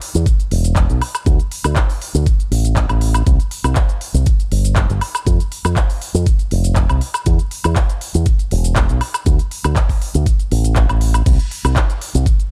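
Sunny and feel-good, this nu-disco excerpt moves at a straight 120 BPM in 4/4, with a knocking, up-front electronic kick, a crisp pop kit of hi-hat, shaker, handclaps, woodblock and crash cymbal in studio reverb, and a punchy fingered electric bass through an envelope filter roaming from E1 to F2, all wrapped in a dark, tape-warm production with little reverb overall.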